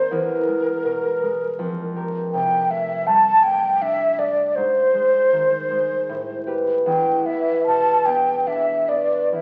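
In a supple, rubato triple metre, this brief fragment of an impressionist classical duo for flute and harp drifts with a dreamy, luminous calm. The concert flute carries the melody throughout its 9.4 seconds, sitting up front with an airy, hollow tone, gentle vibrato and soft attacks. Beneath it, the concert harp supplies fingerpicked accompaniment from its low register upward, its mellow, ringing strings also placed close to the listener. The harmony moves through colourful, unresolved chords such as Fmadd9, G#maj7 and Am9, giving the passage a floating, impressionist quality. A reverberant recital hall surrounds the duo, and the sound carries the crackle of a very old 78 rpm record, lending the whole fragment a hazy, antique patina.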